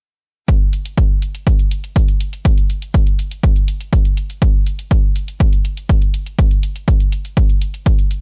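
This progressive house passage opens at 0.5 s with an electronic kick drum and electronic hi-hat entering together at 122 BPM in a straight 4/4 feel. The kick sits up front, punchy and layered, with a tape-saturated roundness that gives it weight. The hi-hat plays at a much lower level beneath it, its layered, softened tone adding a gentle shimmer. A digital ambience surrounds the drums, and despite the spare drum-only arrangement the mood comes across as bittersweet and emotional. Cut from a longer piece, the kick stops at 8.0 s and the hi-hat continues briefly until 8.2 s.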